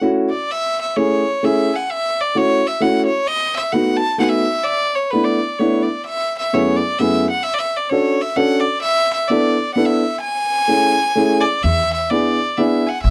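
A bright, nasal violin carries the melody up front with light vibrato and an airy bow, leading this whirling, nostalgic musette waltz in A major at 129 BPM in a rubato 3/4 that is cut from a longer piece. An intimate upright piano with audible action noise, a boxy tone and long sustain accompanies through chords such as Amaj7, B7 and F#m11, and a dark pizzicato upright bass with steel strings and a woody sound joins at 11.6 seconds. The sound is dry and close, like a 1970s studio recording, with light reverb.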